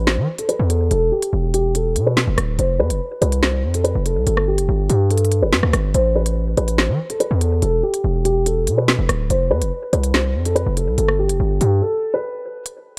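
In a small, dark room sound, this tense, cold drill fragment at 143 BPM in a half-time feel sets a mellow, boxy grand piano melody, filtered and softened by tape echo and a filter sweep, over a heavy, saturated 808-style bass with a fast-attack, decaying, aggressive growl and an electronic kit of crisp hi-hats, rim clicks and a woody snare, all cycling through A5, Em, F5 and G5 before the bass drops out at 11.8 seconds for a brief break that closes on a rootless Fadd9.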